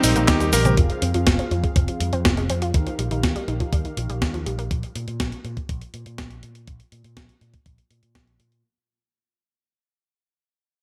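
Lightly reverberant and fading out from 0.8 seconds, this melodramatic, bittersweet Italo disco fragment at 122 BPM in 4/4 opens on an Eb6 chord with a clear, clangy electric grand piano melody with tape echo over very quiet, lush, bright bowed strings, both gone by 0.7 seconds and just after. A drum fill at 0.5 seconds leads into Fm and Ebadd9 chords carried by nasal, wave-folded analog pluck arpeggios and dark, detuned synth brass stabs, both with chorus and tape echo, playing from the start until about 4.7 seconds. Meanwhile an up-front, warm picked electric bass with an envelope filter, a clean 12-bit drum machine with cabasa, handclaps, hi-hat, a medium-tuned snare and toms in gated reverb, and a thumpy electronic kick keep the groove going.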